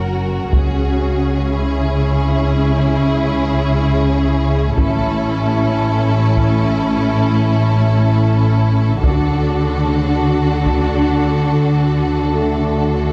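Bowed string sections open this adventurous, heroic excerpt of epic orchestral film score in 6/8: a focused violin melody rides over a second violin line with a smooth top, close violas, and a lush low end of expressive cellos and even, vibrato-rich double basses. From 0.5 seconds, hard-stick taiko drums pound in the distant background of a large room, driving the build-up as the harmony moves through C sharp minor, A and D. At 12.3 seconds a dark, roomy French horn section enters with sustained chords, all set in a moderate scoring-stage reverb with a warm, shadowy production.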